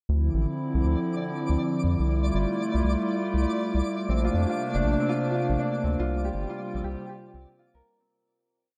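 A thumb-plucked concert harp, roughened by 12-bit sampler grit and tape echo, enters at 4.1 seconds with a 7-step arpeggio loop that drifts against the bar in this eerie, glitchy IDM piece in D minor at 120 BPM with a swung 16th feel, over a round, wave-folded analog bass riff, a hollow, flute-like chorused pad holding chords from Dm9 through Fmaj9 and Bbmaj9 to C7sus4, and a twinkling granular high note, set in a lush, dark hall before a fade-out from 5.4 seconds.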